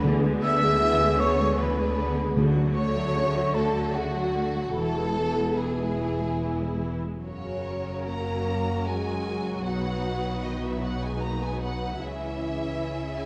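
Rubato and unfolding in 3/4, this tender, hopeful cinematic passage, cut from a longer piece, sets a distant, lush violin section on the melody over a second violin line with a soft attack, focused violas close at hand, vintage-toned French horns holding chords in the background, and a bass of dark double basses with smooth cellos beneath. A hollow, pure wooden flute adds its own second line until 6.8 s, while very quiet timpani struck with hard mallets sound close and dry only through the opening 3.5 s. The whole is bathed in a wet scoring-stage reverb with a dark, warm production as the harmony moves to a new section at 7.2 s.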